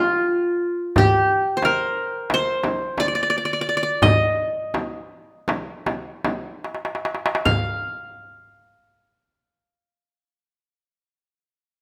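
A bright, plectrum-plucked qanun opens this short excerpt from a Turkish makam ensemble piece, its triple-strung, bright-edged tone sitting up front as it carries the melody between F4 and F5. The mood is melancholic and full of longing, set in a 9/8 metre with a straight feel, and the tempo moves between 143 and 179 BPM counted in eighths, slowing from 1.6 to 7.5 seconds. At 1.0 seconds a metal-shell darbuka joins, crisp, deep and close, placed up front, alongside a large frame drum whose resonance carries a small-room quality. A drum fill from 6.6 to 7.5 seconds leads out of the opening section into a second passage, where both drums fall away at 7.9 seconds and the qanun continues alone. The ensemble sits in a moderate recital-hall reverb that lends the plucked strings a gentle sense of space.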